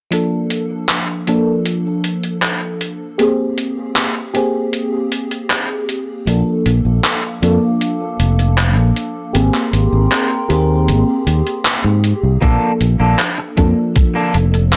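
A woozy, dreamy vaporwave excerpt opens on a lush, detuned FM electric piano with a soft pad layer, coloured by phaser, chorus and tape echo, set against a gated 80s drum machine of handclaps and hi-hat that sounds tape-softened and re-recorded in a small room. Fingered electric bass with tube saturation arrives at 6.3 seconds, soon followed by a warbling, lo-fi tape-like pad with 12-bit sampler grit that sustains dark chords through the Bbmaj7 and Abmaj9 changes. At 12.4 seconds a thumpy electronic kick and a picked, slightly broken-up electric guitar riff join, the guitar carrying a filter sweep and tape echo in a dry, gritty mix that stays dull up top.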